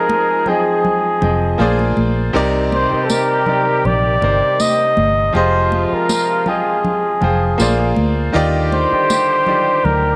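A breathy flugelhorn carries the melody up front, its soft attack, light vibrato and smooth, whispered top giving this lush 1970s-style soul excerpt an intimate, romantic feel. Beneath it, a clear concert grand piano with deep bass and long sustain plays the accompaniment, while a distant, roomy horn section adds punchy, tight stabs doubled in octaves. A dark, round, foam-muted fingered electric bass with an amped tone enters at 1.2 seconds. Congas with thick skins and soft hands sit in the background, joined at 3.1 seconds by a jingly, band-limited vintage tambourine. At a relaxed 80 BPM in 4/4 with a gentle swing on the sixteenths, the harmony moves through Fm7, Bb7 and Cm7, returns to Fm7 and Bb7, and arrives at Ebmaj7 near the end, all heard with light reverb and a small room ambience.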